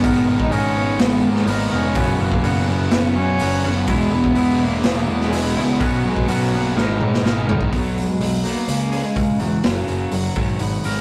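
A reedy, nasal bowed cello with slapback echo carries the melody over a dark, angsty quiet-loud alternative rock groove in G# minor at 125 BPM, where a gritty, boomy, up-front garage drum kit and a round, punchy overdriven bass play alongside two bright fuzz guitar riffs and clean twangy guitar arpeggios in the background, with a drum fill at 6.8 seconds leading into a half-time passage at 7.7 seconds as the thicker fuzz guitar drops out, all captured in a rough, tube-saturated rehearsal-room sound.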